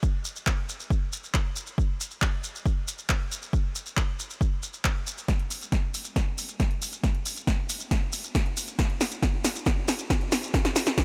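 This euphoric, soaring trance passage, cut from a longer piece, opens at 0.0 seconds with an overdriven analog kick drum set up front in straight 4/4 time, joined by a grainy, mellow acoustic shekere heard in a small room further back. At 0.5 seconds a punchy analog drum machine enters with handclaps, hi-hat and snare, also overdriven and placed up front, with a short room on its snare, claps and hats. From 5.3 seconds the music shifts into a build-up carried by a drum fill that runs to the end at 11.0 seconds. The kick and the drum machine hold the foreground, while the shekere adds a soft, textured layer underneath. A light reverb surrounds the mix.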